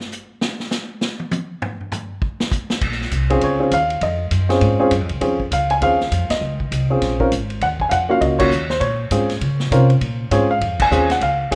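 Light reverb and an intimate studio-room sound frame this smoky, swinging jazz piano trio, cut from a longer piece, which opens with a vintage drum kit soloing, its dark cymbals, medium-tuned snare and tight kick sitting mid-forward with a rolled-off top. A thumpy, woody pizzicato upright bass with steel strings enters at 2.8 seconds, and at 3.3 seconds a baby grand piano takes the melody up front, its warm, natural tone carrying audible action noise and a short sustain. Over Bbm9 and Ebm9 chords, the band strikes several accents together.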